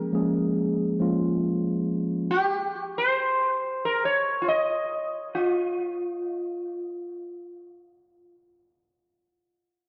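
Sensual and longing, this slow R&B excerpt at 69 BPM with a light sixteenth-note swing opens on a Db6 chord from a mellow, clean tine electric piano with subtle chorus that drops away at 2.3 seconds, leaving an up-front, buzzing, shimmering sitar melody with sympathetic strings and analog delay to carry on until 8.3 seconds, all set in a moderate concert hall reverb with a gritty, low-passed hardware sound and a filter sweep running throughout.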